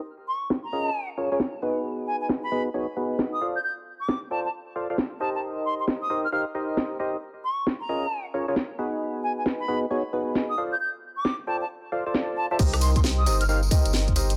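UK garage in a two-step shuffle at 134 BPM, soulful and late-night, with a pure, distant concert flute singing a vibrato-laced melody over hollow, nasal organ stabs that carry chorus, delay and 12-bit sampler grit, while a filter sweep moves across them through the opening 12.6 seconds. A garage kit of cracking snare, bright hats, rim clicks and woodblock shuffles beneath, softened by low-pass filtering and studio reverb. At 12.6 seconds the drop lands on a Cm7 chord, bringing in a tight electronic kick, a jingly tambourine and a deep, round sub bass with sidechain pumping before this fragment of a longer track cuts off.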